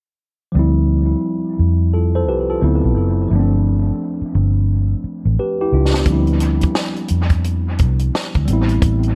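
A late-night, sultry neo-soul and R&B excerpt at 87 BPM in D dorian, swung on the sixteenths and tuned to A4 = 435 Hz. A worn, slightly out-of-tune tine electric piano carries the Dm11, D13, G7sus4 and Am9 chords through a dub echo, while a dark, foam-muted fingered electric bass sits round and up front beneath it. A compact cocktail drum kit with a punchy kick and high-tuned snare enters at 5.9 s, dry but fed through its own dub echo, all set in an echo-heavy studio reverb.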